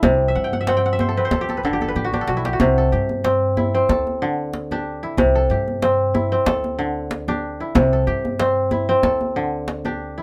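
West African traditional string and xylophone music in C lydian, this joyful clip from a longer piece moves at 93 BPM in 4/4 with a light swing on the sixteenths, its chords alternating between C and D. A mellow, ringing kora sits up front with fingerpicked arpeggios and a crisp fill from 0.3 to 2.6 seconds, while a woody pizzicato upright bass with steel strings anchors the low end. A deep djembe played with soft hands, close and dry, adds a drum fill from 1.8 to 2.6 seconds, and a light reverb gives the whole a gentle glow.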